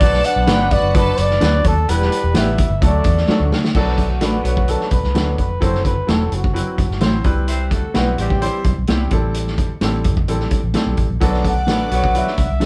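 A band playing live in one room with moderate studio reverb opens this joyful, warm 128 BPM 1960s-style soul excerpt in 4/4, where a breathy, close-miked trumpet with tape echo carries the melody until 7.3 seconds and returns at 11.5, over a gritty, up-front vintage drum kit with a punchy kick, a round, foam-muted fingered electric bass, an intimate baby grand piano with audible action noise, mellow guitar stabs entering at 0.5, a smooth jazz-style horn section in octave doubling, and a background violin section heard only at the start and end, with a drum fill at 3.3 seconds leading the chords from Bm, Em and D into Bm7, F#m7b5, Cmaj7 and Am7.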